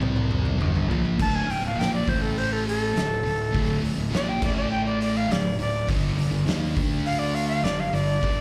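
A drum fill on an oversized, low-tuned kit opens this heavy, brooding stoner and doom metal clip, its boomy kick, fat snare and dark cymbals pumping in a big room alongside a thick, double-tracked fuzz guitar riff with slapback echo and a growly, overdriven fingered bass. At 1.2 seconds an airy alto recorder takes a solo up front, its chiff and vibrato trailed by slapback echo and delay. The whole clip sounds like a live gig heard through a club PA, soaked in venue reverb.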